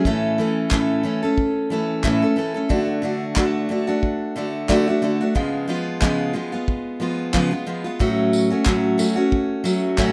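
Sunny and heartfelt, this acoustic pop excerpt moves at 91 BPM in 4/4 with a light sixteenth-note swing, cut from a longer piece. A full-bodied, picked dreadnought steel-string guitar sits up front from the start, moving through A, D and C#7 before shifting to F#m/A at 8.0 seconds. A cloth-damped, thuddy kit with a tight kick and rolled-off top joins at 0.1 seconds, adding handclaps and tambourine in a small-room sound, all within a rough home-demo mix with moderate studio reverb.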